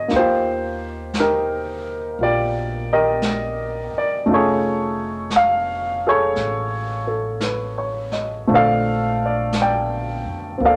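Heard in a moderate studio reverb, this intimate, smoky jazz ballad fragment, cut from a longer piece, swings gently as an up-front baby grand piano voices Ebadd9, F7alt and Bbmaj7 over a woody, thumpy pizzicato upright bass with gut strings and a brushed kit of snare and hi-hat set in a small, natural room.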